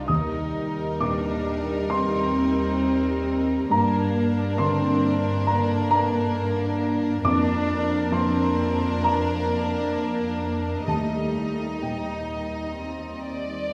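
Cinematic, emotional film score for orchestra, sorrowful and longing, moving with a loose rubato pulse in this short excerpt. A floating, pure violin section carries the melody sul tasto over a mellow, felt-muted upright piano with short sustain, a very quiet, ringing concert harp in arpeggios, and a distant cello section on the bass. At 0.1 seconds a darker second violin section with a smooth top, a background viola section with light vibrato, and a woody, lush double bass section join in, the ensemble set in the wet reverb of a recital hall.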